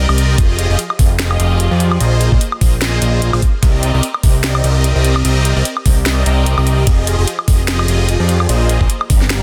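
A bright, detuned sawtooth polysynth riff with chorus, phaser, tape grit, delay and sidechain pumping opens this lush, emotional future bass excerpt in C minor at 148 BPM, half-time with a light 16th-note swing, together with a fat, saturated, nasal analog bass that pumps up front. A trap kit of sharp snare, metallic hats, ride and woodblock joins from 0.1 seconds, and a knocking electronic kick follows from 0.4 seconds, all moving through Fm9, Bb9sus4 and Cm9 in a dry, dense, heavily limited mix.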